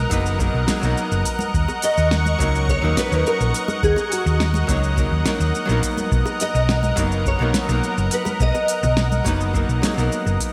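A fingerpicked nylon-string guitar carries the melody in this wistful sunset chillout excerpt, its brilliant classical tone shimmering through ensemble chorus and delay. Beneath it, a round, punchy hollow-body electric bass sits up front with a dark, amped weight, while a clean, picked archtop guitar adds shadowy accompaniment through its own delay. A thick, detuned unison pad with a slow attack and long release holds sustained chords, moving from Bmaj7 to Ebm7 and back to Bmaj7 at 5.8 seconds. At a relaxed 105 BPM in a straight 4/4, a deep analog-style electronic kick pairs with a smooth R&B kit of fat snare, smooth hi-hats, and cabasa, joined from 0.7 seconds by very quiet, close and dry congas and bongos. A lush hall reverb and glossy 1980s-style digital production give the whole a warm, glowing sheen.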